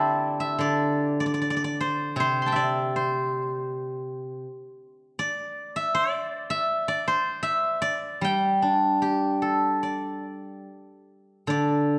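A moderate recital-hall reverb surrounds a solo steel-string zither, placed up front, in this 12-second passage cut from a longer traditional Chinese piece. Played with fingerpicks across a range from C3 to C6, the zither sounds ringing and silvery, carrying a pastoral, flowing mood. The rubato pulse hovers around 69 to 81 BPM in 4/4, and the instrument is tuned slightly below standard pitch, at A4 = 439 Hz.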